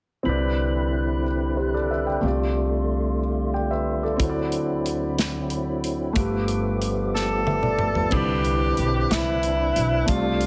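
Heavily compressed with a radio-like sound and light reverb, this short cut from a slow, jubilant gospel piece in 6/8 at 61 BPM opens on an intimate grand piano with audible action noise and long sustain, joined at 0.3 seconds by a fat, lightly overdriven tonewheel organ with key click, chorus vibrato and a slow rotary speaker, and a woody, growly pizzicato upright bass, moving through rich ninth chords in C major. A polished, airy studio drum kit with a tight kick enters at 4.2 seconds and plays a fill from 7.1 seconds leading into the next section. At 7.2 seconds a breathy, subtone tenor saxophone begins an uplifting jazz-style solo melody with vibrato. A very quiet, mellow French horn section adds smooth sustained chords from 8.1 seconds.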